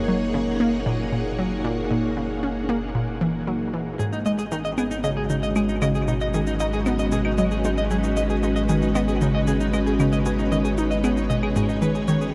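A straight 4/4 pulse at 115 BPM drives this expansive, mysterious piece of ambient, sequencer-driven space music in G# minor, cut from a longer work and set in a wet, huge ambient reverb that lingers for 7.5 seconds. From the opening, a lush, vintage string machine holds slow-attack sustained chords with ensemble chorus and shimmer reverb, while a round, sine-based sub bass fades in underneath on deep, mellow notes. An analog pluck riff, bright and detuned with a sawtooth and square-wave edge, a noise layer and a short decay, enters at 0.1 seconds through chorus and tape echo. At 4.0 seconds the harmony moves from F#add9 to G#m as a clean, scooped semi-hollow electric guitar joins with picked arpeggios bathed in shimmer reverb and tape echo. Cabasa and claves arrive at the same moment, with a produced, electronic character and echoing softly far back in the mix.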